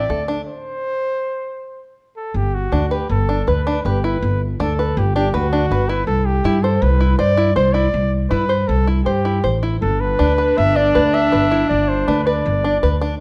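This short cut from a longer piece sits in a dark, warm production, wrapped in the moderate reverb of a recital hall. It is hopeful, playful contemporary chamber music in an uneven 5/4 with a straight feel. Up front, a flugelhorn carries the melody in a soft-attacked, jazz-style solo, colored with vibrato and scooped notes. Beneath it, a fingerpicked open-back banjo spins twangy, plunky arpeggios, and a woody pizzicato upright bass on steel strings anchors the low end, also up front. A clear, smooth-topped clarinet plays a classical-style second line, sounding briefly at the start and stopping at 0.4 seconds. The ensemble breaks off for a stop until 2.3 seconds, when the harmony moves through Gadd9, C and G, and the clarinet returns at 9.8 seconds.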